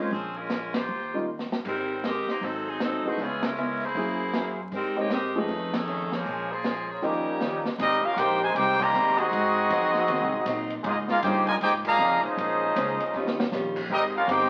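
Big band swing in an energetic, joyful mood, this excerpt opens with a bright, vibrato-laden saxophone section carrying the melody over intimate grand piano, whose action noise is audible, while a woody pizzicato upright bass and a vintage drum kit with dark cymbals and a punchy kick set the swing underneath. A picked acoustic archtop guitar with a boxy tone joins at 1.7 seconds, and the band hits accents together at several points, with drum fills adding punctuation. Around 7.8 seconds the saxophones and piano drop out, and the music moves into a new section in which a clear trumpet section, sitting highest in the mix, takes over the melody. Beneath it, a nasal trombone section in straight mutes plays a second line, having entered slightly earlier at 7.0 seconds. Jazz harmony rich in ninth chords and altered dominants colours the progression, and the whole track carries the crackle of a very old 78 rpm record, set in a wet studio reverb.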